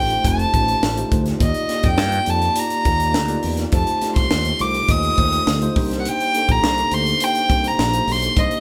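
A moderate stone-room reverb surrounds this short cut from a longer piece, a band heard playing live together in one space with a polished 1980s jazz-funk pop sheen. At 103 BPM in a straight 4/4 and C dorian, the mood is bittersweet and urban, the harmony moving from F9 to Ebmaj7 at 1.4 seconds, back to F9, then settling on Cm9 at 5.8 seconds. Up front, a single bowed violin carries the melody between Eb5 and Eb6, its close, nasal, reedy gut-string tone and airy bow giving it a period-style character. Beneath it, a mellow tine electric piano plays clean accompaniment through its built-in speakers, while a fingered electric bass, bright, growly and direct from the amp, holds the low end from F1 to G2. An acoustic fusion drum kit enters at 0.1 seconds with hi-hat, a punchy kick and a high-tuned snare, its small, pumping room sound adding snap to the groove.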